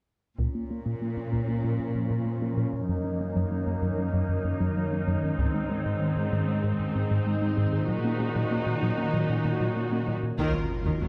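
Closely miked and detailed in a light reverb, this tense, relentless excerpt of a hybrid orchestral and electronic film score sets a lush viola section, a woody, up-front cello section and a round analog bass beneath a tight, sawtooth-edged sequenced synth arpeggio, with a cloudy granular pad drifting in at 1.6 seconds. Hard-stick taiko hits punctuate the passage under a filter sweep, leading into a band accent where an electronic impact and a distant, smooth violin section arrive together at 10.4 seconds on a final minor chord.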